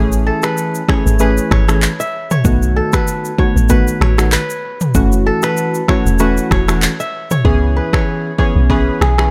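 Dry and close, this hypnotic, smooth afrobeats excerpt pairs up-front detuned analog keys with chorus over a dark, round log drum bass and a layered electronic deep house kit of deep kick, snaps, handclaps, rim click, shaker and toms, while a crisp, ringing fingerpicked kora riff with tape echo enters at 0.3 seconds over chords moving from Amaj7 through B7 and F#m7 to C#m7.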